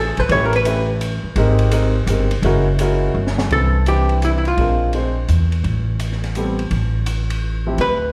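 Heard through a live venue's PA with moderate club reverb, this short cut from a longer piece is a playful, relaxed small-group jazz waltz in 3/4 at 168 BPM, swung on the eighths. A dark, clean hollow-body electric guitar with slapback echo carries the melody up front in brief phrases, returning at 3.5 seconds. Beneath it, a woody pizzicato upright bass on steel strings holds the low end, an intimate vintage upright piano with slapback echo and audible action noise voices long-sustained chords such as A9, Abmaj9 and Cmaj9, and an acoustic kit sits further back on hi-hat, ride, punchy kick and high-tuned snare, with a drum fill at 3.1 seconds leading into the second section.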